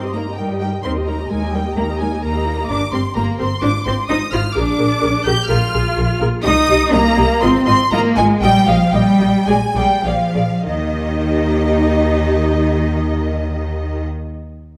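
A spirited, graceful classical-period movement for string orchestra, cut from a longer piece, moves with a quick but rubato pulse and slows between 5.5 and 10.7 seconds before a new section arrives at 10.7 seconds. A warm, expressive violin section carries the melody with vibrato and portamento, while a second violin section adds a rich, even second line and a dark, woody viola section fills in lush accompaniment. Up front, a dark cello section sings with portamento over a smooth double bass section, all bowed and set in a moderate scoring-stage reverb.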